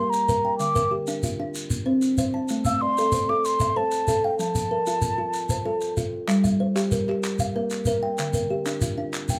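An up-front, woody kalimba rings out airy arpeggios through this hypnotic, trance-like southern african traditional piece, an mbira-style interlocking cycle at 126 BPM in 12/8 and G dorian, alongside a hollow wooden flute with vibrato and rolled-off highs that carries the melody until 5.9 seconds, a grainy shekere, and crisp group handclaps that enter at 6.3 seconds, all caught by close, detailed microphones with light reverb.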